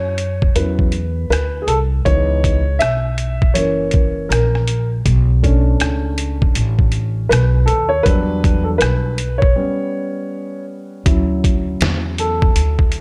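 A swung 80 BPM groove in 4/4 from a gritty, pitched-down, compressed sampler-style trip hop kit, with thumpy kick, snare, rim click and hi-hat entering at 0.2 seconds, drives this relaxed, warm jazz-hop piece in D major, where a growly, woody pizzicato upright bass sits up front beneath a dark, mellow grand piano soloing over changes from Dmaj9 to G, through a break at 9.6 seconds and into a new section at 11.1 seconds, inside a small room ambience.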